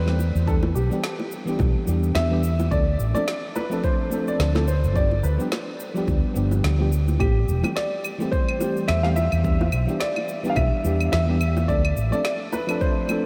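An up-front fretless electric bass, dark, round and amped, carries this warm, relaxed sunset chillout excerpt, cut from a longer piece, with a gentle swing in its 4/4 groove until it drops out at 12.1 seconds. Above it, a worn, boxy grand piano sings the melody with an intimate tone and audible action noise, set in a diffuse ambient delay. A vintage FM electric piano fills in the accompaniment, its soft, warbling, full-bodied sound, with a noise layer, a fast attack and a decaying tone, colored by chorus and delay. A deep, layered electronic kick anchors the beat, joined by a produced electronic snare with a woody tone, shaker and claves, while very quiet, low-tuned bongos played with soft hands add an acoustic touch. The harmony drifts through Em7, Dm7, G7 and Am7 before returning to Em7 and Dm7, and a huge reverb soaks the whole mix in a dreamy haze.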